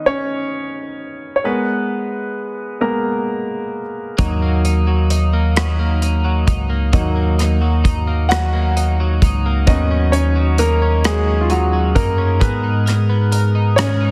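A dense, heavily limited modern mix with light small-room reverb frames this tender, romantic six-eight pop ballad at 44 BPM, opening with a clear, polished concert grand piano, deep in the bass and up front, playing alone over chords around B add9 and G-sharp minor add9. At 4.2 seconds a bright, compressed twelve-string electric guitar enters with clean picked arpeggios through analog chorus, while a tine electric piano takes the bass line with a clean, close sound through its built-in speakers. A dark, smooth acoustic drum kit with a tight kick, hi-hat, rim click and softly clipped snare joins at the same moment, its top end rolled off.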